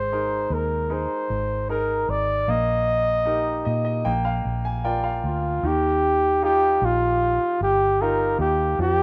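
Set in a straight 4/4 at 76 BPM, this hopeful, emotional pop ballad fragment in Eb major features a smooth, up-front flugelhorn solo carrying the melody over clear grand piano accompaniment, which adds a fill from 3.3 to 5.6 seconds, and a dark, round, foam-muted vintage electric bass, all in a wet reverb with the rough feel of a home demo, with the chords moving from Absus2 through Eb/Bb and Bb to settle on Ebadd9 at 5.6 seconds.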